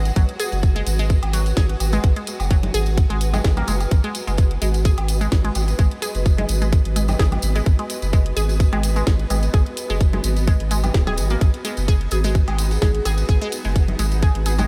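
A thick, saturated sub bass pumps beneath a blurred granular cloud pad from the start of this quirky, clinical minimal techno excerpt with swung sixteenths, joined almost at once by a tight, up-front electronic kick, a garage kit's cracking snare and hi-hat, a jingly close tambourine and a squelchy, resonant blip pluck riff run through phaser and delay, then shortly after by overdriven woodblock and congas set back in a large room, before a pulsing gated texture slips into the background at 4.5 seconds and a ringing, airy vibraphone sounds briefly at 4.6 and 12.1 seconds.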